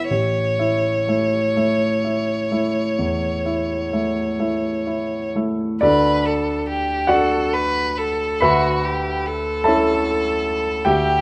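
Romantic classical music for violin and grand piano, tender and serene in a slow, rubato 12/8 at 41-51 BPM, pairs a rich, smooth, evenly bowed solo violin with vibrato singing the melody between F#4 and C#5 against a polished, present grand piano accompaniment spanning A1 to B5, both up front in a close, detailed recording with light reverb as the harmony moves from A to D and settles on A over D at 8.4 seconds in this brief excerpt cut from a longer piece.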